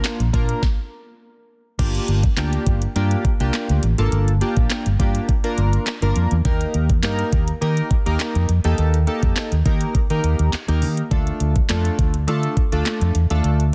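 Dance-pop with an energetic, confident drive, this excerpt opens on a Bb chord before a brief stop from 0.6 to 1.8 seconds, then settles into a Gm7, Eb and Dm progression. An up-front electronic drum kit with a knocking kick, sharp snare, metallic hi-hats, handclaps and crash cymbal leads the groove alongside a dark, round, foam-muted electric bass that pumps with sidechain. Glossy retro synth keys built from detuned sawtooth and pulse waves add chorus, filter sweeps and fast-attack, decaying notes that pump beneath a dry, dense and heavily limited modern master.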